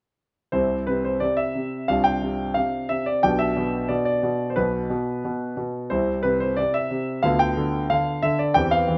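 A playful, elegant classical-period piano sonatina fragment, cut from a longer piece, features a clear concert grand piano playing solo, up front and close, with deep bass, a smooth vintage tone and short sustain, spanning B1 to G5 over a straight 4/4 pulse in light reverb from 0.5 to 9.0 seconds.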